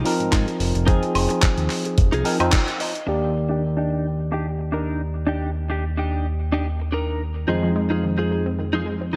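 A fat, mellow analog bass sits up front in this groovy, cosmic nu-disco excerpt at 109 BPM with a light 16th-note swing, moving from Fm7 to Ebmaj7 and back while a barky tine electric piano pumps against the sidechain and a clean, direct-recorded electric guitar picks a chorused riff, both under filter sweeps from 3.1 seconds. A thumpy, tape-warm electronic kick and a dusty soul-sampler kit of handclaps, hi-hat and woodblock drive only the opening few seconds, with guitar fills and a band accent at 2.5 seconds. A round, detuned analog pluck adds gritty 12-bit arpeggios in the background from 7.5 seconds, and the whole mix is soaked in a lush hall reverb for a dreamy feel.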